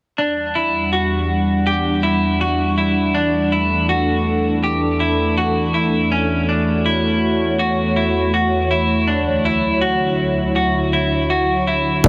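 In a straight, unhurried 4/4, this melancholic, hazy dream pop fragment opens at 0.2 s with a bright, clean semi-hollow electric guitar picking arpeggios up front, coloured by subtle chorus and digital delay. From 1.5 s a warbling, lo-fi pad drifts in behind it, holding detuned sustained chords that bloom slowly and linger, thickened by its own chorus and built-in reverb for a nostalgic glow. The harmony moves through Em7, Dsus2/E, F#m7/E and Dmaj7, the held E under the middle chords giving the passage a suspended, wistful quality. Only at 12.0 s, just as the fragment is cut, do a huge arena drum kit with a punchy kick and hi-hat, a fat, saturated analog bass, and a soft, felt-muted upright piano note arrive together. The mix carries light studio reverb and is heavily compressed, lending it a squeezed, radio-like sheen.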